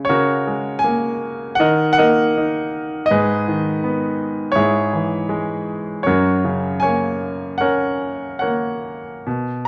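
A dark, moderately reverberant recital hall surrounds this brief 9.7-second passage, cut from a longer classical work for solo piano. The concert grand sits up front with a clear, polished tone, deep bass and short sustain, ranging from F#2 to G#5 as it moves through F#add9/C#, D#m, G#m and C#m/G# before settling on F#. The mood is peaceful and calm, with a lyrical, rubato feel around 72-83 BPM in 4/4.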